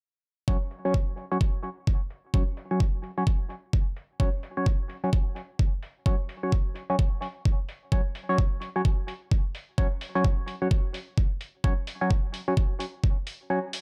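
Swaggering and aggressive, this bass house passage, cut from a longer piece, moves at 129 BPM in 4/4 with a 61% swing on the 16ths and sits on an F#5 chord. A hollow, nasal organ stab with a fast attack and wave-folded bite plays from 0.5 seconds, thickened by chorus and digital delay and pumped by sidechain compression, while a filter sweep runs across it. Up front, a knocking electronic kick drives until 13.1 seconds, joined by low-passed metallic hi-hats, with both drums re-recorded in a small room, sharing a filter sweep and set in a digital ambience.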